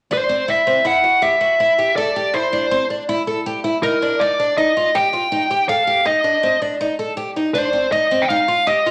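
Intricate and driving, this progressive instrumental fragment, cut from a longer piece, moves at 161 BPM in an odd 5/4 metre with a straight feel and a tuning reference of A4 = 441 Hz. A fuzz lead guitar carries the melody between Bb4 and G5 throughout, its distorted, picked electric tone sitting up front. Beneath it, a picked twelve-string acoustic guitar plays arpeggios between C4 and A4 for the whole span, its shimmering, octave-doubled sound boxy yet close and present, set a little lower than the lead. The harmony moves from C to Eb at 3.8 seconds and reaches F7(no3) at 7.6 seconds. A large studio reverb with a one-second decay lends a wet sense of space, while a layer of vinyl crackle adds a worn, textured surface to the sound.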